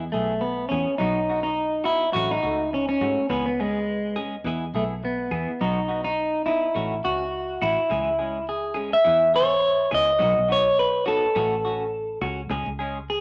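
Carefree and danceable, this highlife guitar band excerpt moves at 104 BPM in 4/4 with a light sixteenth-note swing, cycling through E, B, F#m/A and C#m in E major before settling on C#5 at 12.5 seconds. A compressed, dark-toned clean electric guitar carries the melody with spring reverb and sits loudest. A warm, up-front clean guitar with phaser plays the accompaniment until 13.0 seconds, and a round, foam-muted fingered bass holds the low end. A moderate studio reverb surrounds the whole.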